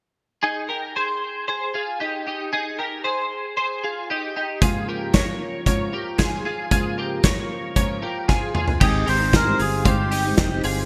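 A straight 4/4 pulse carries this breezy, youthful slice of jangly indie pop, cut from a longer piece. A twangy twelve-string electric guitar opens alone with clean, compressed arpeggios sitting up front, shimmering through an ensemble chorus as the harmony moves from Abmaj7 to Bbm7/Ab. At 4.6 seconds a fingerpicked steel-string acoustic guitar adds concert-toned accompaniment. A loose indie drum kit arrives at the same moment with tight kick, medium-tuned snare, hi-hat, toms and dark crash cymbals, its pumping small-room sound treated with gated reverb, and a drum fill leads into the next section. At 8.8 seconds a reedy, nasal melodica takes a short melody through delay, while a fingered electric bass adds a round, direct low end as the chords return to Abmaj7. A moderate, lush hall reverb and bright 1980s-style digital production frame the whole passage.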